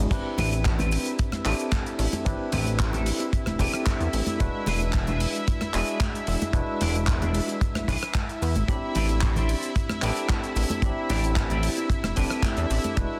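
This nu-disco excerpt opens on a glossy, chorused synth bass up front, its pulse-width and sawtooth tones plucked by a filter, alongside a clean tine electric piano that carries sidechain pumping and slapback echo. In the background, a twangy, picked electric guitar with an envelope filter plays a riff through ensemble chorus and slapback echo. From 0.1 seconds, a lush, thick unison pad of detuned sawtooth and square waves holds sustained chords with a slow attack, also carrying sidechain pumping. A dry, tight kick sits up front over a damped 70s kit with a rolled-off top, adding hi-hat, handclaps, rim clicks, ride and crash, while cabasa, congas and bongos played with hard hands sit further back in a live room. The straight groove moves from Am11 to E7 and back, giving a cosmic, sensual mood, and a clean electric guitar fill closes the passage between 12.2 and 13.0 seconds inside a dense, heavily limited modern master.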